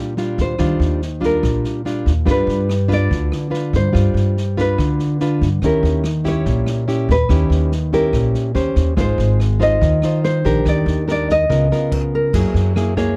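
An up-front, dark-toned nylon-string guitar fingerpicks the chords of this sunny, romantic bossa nova in Eb major at 143 BPM. A second, thumb-plucked classical nylon-string guitar carries the melody with a slapback echo. A growly, woody pizzicato upright bass and an open jazz drum kit with dark cymbals, a boomy kick, rim clicks and a medium-tuned snare complete the group. The harmony moves from Ebmaj9 through G7, Eb7b9 and Ab6 to a closing F#9. The band breaks for a brief stop from 11.9 to 12.3 seconds in this dry, close, 1970s-style studio recording, cut from a longer piece.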